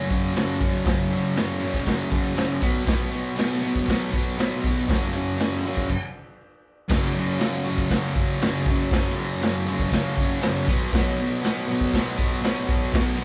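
A straight 4/4 beat at 119 BPM drives this raw, swaggering garage rock excerpt, played by a small band live in one room with light reverb and tuned slightly sharp to A4 = 441 Hz. Up front, a bright, double-tracked fuzz guitar picks a distorted riff between F#2 and B3, moving between F#5 and B5 chords. The acoustic drum kit plays with a punchy kick, a medium-tuned snare and crash cymbal, its saturated, gritty sound rolled off at the top and pumping in the small room. A jingly tambourine sits close but in the background until 5.8 seconds. The band then stops from 5.9 to 6.9 seconds before the riff returns for a second pass that runs to the cut.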